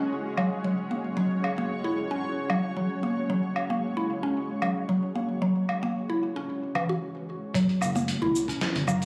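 A woody, mallet-like synth pluck leads this peaceful organic downtempo excerpt, its round FM arpeggios colored by chorus, phaser and tape echo over a cloudy granular pad whose blurred, evolving chords pump with sidechain. A gritty, sampler-style drum kit with a fat snare, hi-hat, shaker and woodblock sits up front with a lightly swung feel. After a brief stop at 7.0 seconds, a thumpy electronic kick enters at 7.5 seconds, joined by pizzicato upright bass and bright, band-limited congas and bongos in the background, all heard through a lush hall reverb and the roomy sound of a phone recording.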